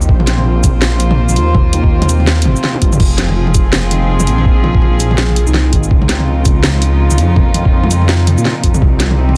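A dense, heavily limited modern mix with light digital ambience frames this dark, tense excerpt of half-time drum and bass at 165 BPM in F minor, where a deep, rumbling detuned saw bass sits up front beside a compressed, pitched-down electronic kick with a gritty thump and a layered electronic kit of cracking, softly clipped snare, bright hats, shaker, toms, crash and a drum fill at 2.6 s. A rich, nasal cello section bows sustained, reedy chords with sidechain pumping, while a soft, felt-muted upright piano plays boxy, intimate arpeggios through delay in the background, its action noise audible. A very quiet, breathy flute-like synth lead with chorus and vibrato surfaces briefly at 5.1 s over chords moving from F minor through D-flat to C minor.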